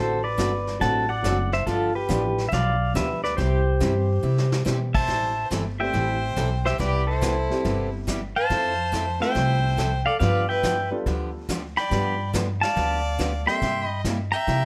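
Country western swing with a cheerful, down-home mood and a swung feel, led by an up-front, clean pedal steel guitar played with fingerpicks and slide, its volume swells bathed in plate reverb. A bright picked dreadnought acoustic guitar, a woody, thumpy pizzicato upright bass and a warm upright piano with short sustain fill out the accompaniment, while a vintage brush kit with dark cymbals and a punchy kick plays a fill at 4.2 seconds. A smooth bowed fiddle with light vibrato joins as a second line at 4.9 seconds, and the band sits in a moderate club-sized room.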